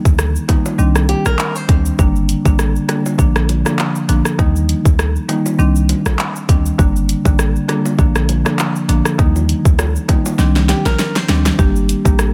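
A woody marimba struck with medium mallets opens this bouncy, tough dancehall excerpt, sitting up front with a sidechain pumping effect as a deep, boomy 808-style bass and a punchy, layered pop drum kit with fat snare, handclaps, hi-hat, rim click and shaker join almost at once. Very quiet, low-tuned bongos add round percussion from 0.5 seconds, while a fingerpicked flamenco guitar plays brief arpeggios near the start and again near the end. The chords cycle through Eb, Cmadd9, Gm and Bb in a small room, and a drum fill closes the passage from 10.4 seconds.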